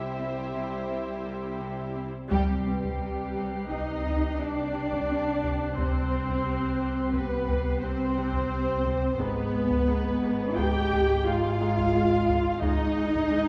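Cinematic suspense film score, eerie and ominous, moving at 87 BPM in a straight 5/4 within C harmonic minor, cut from a longer piece. Muted violin sections carry a very quiet, dark melody and a second line above a rich, soft-attacked viola accompaniment and a lush cello bass, all bowed con sordino with a veiled vibrato. A mellow, fingerpicked Celtic harp rings out a low riff in the background, while a very quiet vibraphone with medium mallets adds a metallic shimmer until 9.2 s. At 2.3 s a band accent brings in the muted double bass section and a heavy-stick taiko ensemble, compressed and saturated, as a faint high violin texture floats in the background until 8.8 s. The harmony shifts from C to C minor and then darkens to A-flat minor at 9.2 s, all set in a wet scoring-stage reverb heard from further back in the room.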